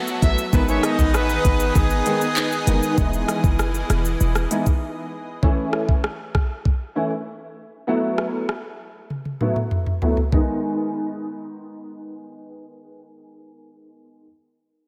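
Drenched in a lush hall reverb, this dreamy, hypnotic dancehall cut at 98 BPM in G# phrygian opens with a thick, detuned sawtooth pad pumping under sidechain alongside a punchy, tight 808-style bass and a mellow horn section with light vibrato and octave doubling, all three dropping away by 5.4 seconds. An electronic afro-pop kit sits up front with a knocking kick, smooth hats, handclaps, rim clicks, shaker and toms, closing with a drum fill from 9.1 seconds. A warm baby grand piano carries the accompaniment throughout, taking a filter sweep through the middle section over chords moving from G#m to Emaj7, A and B7sus4, for a tough, cut-from-a-longer-piece feel.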